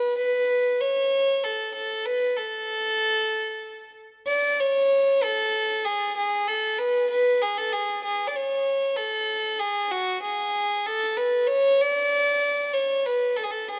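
A rich, reedy violin carries the melody alone from start to finish, its gut-string tone heard close and up front in a period style from a single bowed player. The music is Persian, set in dastgah mahur, and moves in a straight three-beat metre with a stately, festive bearing. The line stays in a compact span from F#4 to D5, and the opening passage gives way to a new section at 4.6 seconds that runs until the violin stops at 13.8 seconds. A lush hall reverb with a long tail surrounds the instrument, lending the playing a sense of space. The sound has the rough balance of a home demo, and the recording is cut from a longer piece.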